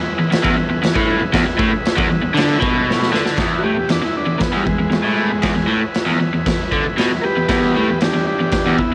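A clean combo organ with light vibrato holds background chords over a double-tracked, overdriven electric guitar riff at the start of this raw, swaggering garage rock excerpt in E mixolydian at 117 BPM, with a punchy, gritty acoustic drum kit in a pumping stone room entering at 0.3 seconds and playing a fill before a buzzy, overdriven second combo organ takes an up-front melodic solo with cassette tape coloring from 3.4 seconds, the piece captured as a home cassette recording with light small-room reverb.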